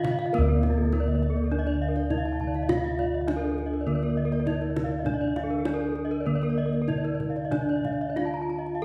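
Brilliant and hypnotic, this short excerpt of Balinese gamelan moves at 100 BPM in 4/4 with an uneven beat, set in D pelog. A bronze metallophone carries the melody between Bb3 and F4, struck with a horn mallet for a dark, smooth tone that sits up front. Two more metallophones weave arpeggios above it: one played with a wooden mallet spans A4 to Bb5, and a brighter one, also horn-struck, ranges from F4 to A5. All three are tuned in pairs, so their ringing bronze notes carry shimmering beats. Beneath them, bossed gongs hold the bass from D2 to Bb4, close-miked, dry and full with a round, beating tone, while a tight, band-limited kendang with a vintage character is played with hard hands. The ensemble sounds throughout the roughly 8.8 seconds, framed by the reverb of a recital hall with a 1.4-second decay.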